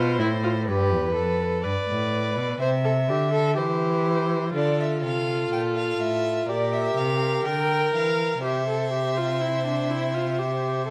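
Classical, baroque-style fugue for string quartet, stately and elegant, heard as a fragment of a longer piece in the moderate reverb of a recital hall. From the start, a distant, smooth second violin, a close, clear viola and an up-front, soft-attacked cello with portamento play together, each with vibrato. At 4.5 s a rich, expressive lead violin enters with the melody, sliding between notes through to the end at 10.9 s.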